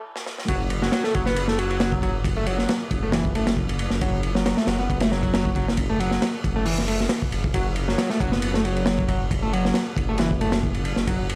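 Swung sixteenths at 136 BPM drive this energetic, gritty breaks excerpt in F# minor, as a crunchy breakbeat kit of kick, snare, hi-hat and ride plays a short fill at 0.2 seconds before the drop lands at 0.5 seconds. The punchy, saturated drums sit up front with dark cymbals and a rolled-off top, while a deep, rumbling detuned saw bass holds F#1 underneath. Over them an overdriven, guitar-like synth lead screams a riff between E3 and B3, bright with vibrato and colored by distortion, lush chorus and analog delay, within a dry hardware sound touched by light reverb.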